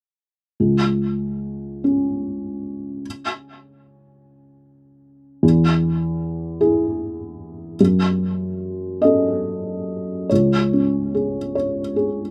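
A felt-muted upright piano enters at 0.6 s, its tone muted, dark and boxy, with audible action noise and an up-front, intimate presence as it spans C#2 to D#5 in an accompanying role. This slow classical fragment in C# minor moves in a rubato 6/8 at roughly 46-52 BPM, carrying a longing, melancholic mood as the harmony settles on E, then F#m, and shifts to C#5 when a new section begins at 10.3 s. Recorded outdoors with a dry, close sound, it is cut from a longer piece and stops at 12.3 s.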